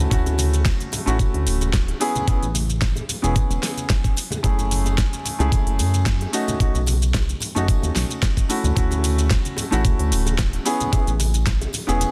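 A dense, heavily limited and dry-sounding nu-disco excerpt with a cosmic, sleek mood, built on a knocking electronic kick up front, a pop kit with a fat snare, crisp hats and shaker, a glossy, nasal chorused synth bass with tube saturation, a baby grand piano comping up front through vintage 12-bit sampler grit and sidechain pumping over Dmaj7, Amaj7, F#m7 and B7 chords, and bright tambourine, bongos and congas set distant in the background, all with a light 16th-note swing.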